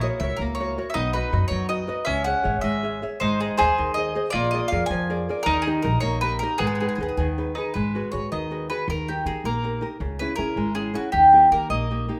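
A bright, woody mandolin carries the melody from the first moment, its doubled strings picked up front, while a second bowl-back mandolin traces a lower line, a fingerpicked nylon-string guitar supplies accompaniment, and a pizzicato upright bass thumps beneath. This sunny, lively Italian serenade in G# minor moves in 6/8 at 106 BPM counted in dotted quarters, yet the feel stays rubato and freely phrased. The guitar sits close and small, with a touch of audible finger squeak, and the bass adds a thumpy, warm foundation on its steel strings. The bowl-back mandolin drops out at 7.7 s as the second section begins, leaving the lead mandolin, guitar and bass to carry the closing passage through to about 12.2 s. A moderate recital-hall reverb gives the ensemble a natural sense of space in this short passage cut from a longer piece.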